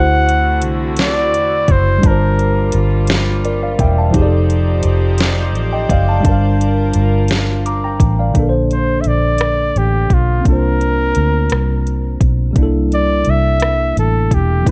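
A sultry, late-night slow six-eight R&B excerpt opens with a close-miked flugelhorn melody with light vibrato over a worn, slightly out-of-tune tine electric piano in lush chorus, reedy gut-string studio strings and a round, foam-muted electric bass; an electronic drum kit with soft kick, deep snare and metallic hats enters at 0.3 seconds, the strings drop out at 8.3 seconds, and the flugelhorn returns at 8.7 seconds, all in a dry, up-front mix.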